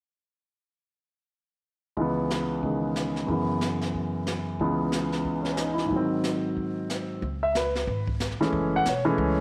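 A warm, up-front grand piano carries the melody over a brushed drum kit with a high-tuned snare and boomy kick from 2.0 seconds in this swinging, moody jazz piano trio excerpt at 183 BPM in C# minor, with slapback echo on the piano, a woody pizzicato upright bass joining at 7.2 seconds, and a moderate echo-chamber reverb around small-room ambience.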